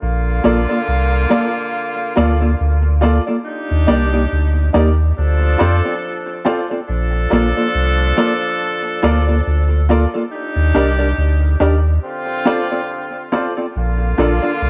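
A small room with light reverb frames this laid-back, uplifting reggae cut from a longer piece, moving at 70 BPM in Bb major with a gentle sixteenth-note swing. A round, deep sub bass with transformer saturation sits up front, while a clean, compressed, fingered electric guitar and a woody, mellow upright piano playing stabs fill in the chords from Bbmaj7 through Ebmaj7 and Dm7. A clear horn section with light vibrato and a vintage feel carries the second line through dub echo, and a break arrives at 12.0 seconds before the return to Bbmaj7 at 13.7 seconds.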